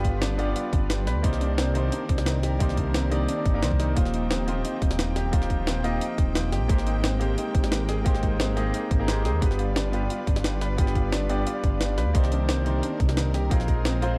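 Liquid drum and bass at 176 BPM with a dreamy mood, moving through Cm9, Eb69 and Abmaj9 chords over a dark production with light reverb and small room ambience. A clear, intimate baby grand piano with audible action noise and digital delay carries the accompaniment, while a soft, felt-muted upright piano plays delayed arpeggios and a studio string section holds bowed, vibrato-laden chords in the background with sidechain pumping. Underneath, a menacing, saturated detuned saw bass evolves through filter swells up front, driven by a tight, layered electronic kick and a gritty, pitched-up, sampler-style jungle kit of hi-hat and snare.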